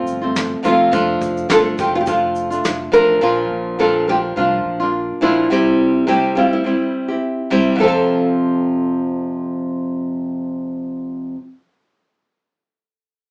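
Acoustic pop with a carefree, sunny mood and a lightly swung feel, cut from a longer piece. Two fingerpicked nylon-string guitars carry it throughout: a bright, up-front classical lead plays the melody over a warm, small-sounding accompaniment with audible finger squeak, while a deep, full sub bass with an added octave holds the low end until about 5.1 seconds and a vintage brush kit of punchy kick, medium-tuned snare and shaker plays only until 3.1 seconds in a pumping small room. The mix sits somewhat back in a wet studio reverb with a small-speaker character, and the chords move from F through Dm/F, Bb and C before returning to F at 7.8 seconds as a new section begins.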